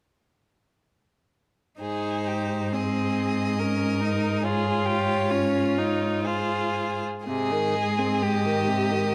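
Set in a moderate recital-hall reverb, this serene, lyrical passage from a slow romantic string-quartet movement in 3/4 unfolds with rubato from 1.8 s: a clear, focused first violin sings the melody with vibrato close to the listener, above a rich, up-front second violin line, a bowed viola accompaniment, and an expressive cello bass with soft attacks and portamento.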